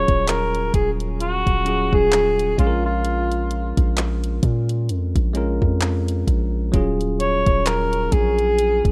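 Contemporary R&B at a slow 65 BPM in Eb minor, this moody, longing excerpt swings its sixteenths gently in 4/4. A mellow cor anglais carries the melody in a classical, solo style, its light vibrato sounding distant and roomy yet placed up front, with a digital delay trailing its lines between F4 and Db5. Beneath it, a bell-like tine electric piano adds bright, clean chords that sound as if heard through built-in speakers, moving from Ebm11 to Bbm7 at 2.6 seconds and back to Ebm11 at 6.7 seconds. A deep, sine-toned 808-style bass holds long notes with a fast attack that then decays, while a smooth electronic drum kit enters at 0.1 seconds with a soft kick, warm hi-hats and handclaps. The whole has a digital ambience and the character of a rough home demo mix, and the fragment is cut from a longer piece.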